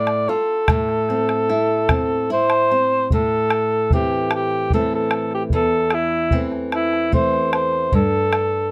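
A dark cor anglais with light vibrato and a smooth top carries the classical-style solo melody up front in this melancholic yet festive Andean folk piece at 75 BPM in 3/4, set in A minor pentatonic over a bright, fingerpicked nylon-string guitar with audible finger squeak and a round, close, dry bombo, moving from Dm/A to Am within the first second, with a new section beginning at 3.1 seconds, before the harmony drops away at 7.9 seconds, all captured with close, detailed microphones and light reverb in a fragment cut from a longer piece.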